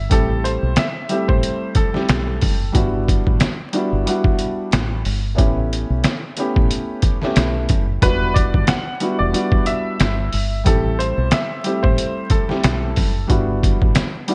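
A swung, pitched-down sampler kit drives this tough, dark boom-bap hip-hop fragment at 91 BPM, its thumpy kick, medium-tuned snare and hi-hat overdriven and pushed up front with gated reverb, over a round, foam-muted dub bass. A worn, boxy grand piano carries the Am7, Em9/G, A9 and Em9 changes through a cassette-tape haze, while a brilliant, woody, slightly detuned upright piano with audible action noise and delay plays the melody briefly at the start and returns at 8.0 seconds. Vinyl crackle and light reverb frame the 1980s-style digital production.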